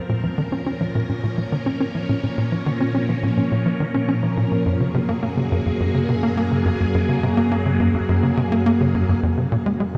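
Expansive and mysterious, this ambient, sequencer-driven space music at 105 BPM in Bb minor sets a swirling, vintage phased string machine, fading in with slow-attack sustained chords through ensemble chorus and phaser, against a punchy, tight sawtooth sequencer bass riff entering at 0.1 seconds under a filter sweep and lush chorus with analog delay, both parts bathed in shimmer reverb and a vast cathedral echo as the harmony moves from Bbm to Gbadd9 to Fsus4 in this piece cut from a longer work.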